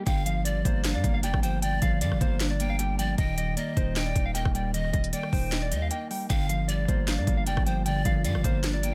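Dark, clean electric guitars open this eerie, hard-hitting half-time trap excerpt, one carrying the melody and one the accompaniment, both trailed by analog delay, before a breathy, reedy pan flute with vibrato adds a second line, a saturated, aggressive 808-style bass and a tape-tinged trap kit of knocking kick, sharp snare, crisp hats, handclaps and rim clicks sit up front, and an ethereal, very quiet pad slips in with sustained chords at 7.4 seconds in an echo-heavy but otherwise dry mix.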